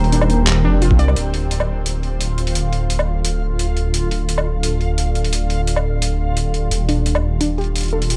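Opening on a drop over an Eb chord, this dark, cinematic half-time drum and bass excerpt at 173 BPM in D phrygian sets an up-front, rumbling detuned saw bass beneath a moody, slow-attack ambient pad with chorus, reverb and sidechain pumping, a reversed, dreamy swelling texture, and gritty, overdriven boom bap sampler-style drums of handclaps, hi-hat and woodblock, while a warbling lo-fi pluck plays arpeggios through chorus and dub echo at the start and again from 6.9 s, a thumpy, pitched-down electronic kick hits at 0.9 s, and the harmony moves to Dm7 at 1.2 s before returning to Eb.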